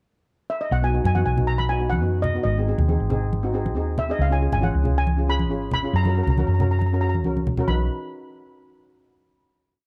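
A round, punchy hollow-body electric bass sits up front with a syncopated figure in this carefree, festive calypso at 138 BPM in B major, entering at 0.7 seconds after a steel pan pickup. The lead pan, played with soft rubber sticks, carries a mellow, dark, motif-based melody of song-like phrases, while cello pans add airy triad chords in rhythm and congas with a thin, bright skin play a loose pattern under soft hands. The short whole piece moves through B, G#, C#7 and F#, with a drum fill from 7.1 to 7.7 seconds leading to a final B chord, all in a dry, close small-room sound with a 1970s studio character.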